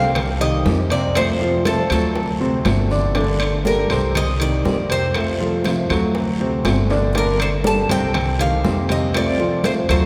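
A straight 4/4 pulse at 120 BPM drives this nostalgic Cuban son and guajira excerpt in G minor, where a metallic, double-strung tres carries the melody over thumb-plucked flamenco guitar, short-sustain grand piano arpeggios and a growly, woody upright bass up front, while very quiet tight bongos, soft-handed congas, ringing metal-shell timbales, distant claves and a raspy guiro in the background come in at 0.2 seconds, a drum fill lands at 6.9 seconds, and a wet cathedral reverb gives the whole cut a warm glow as the Cm7, F, D7 and Gmadd9 chords cycle through.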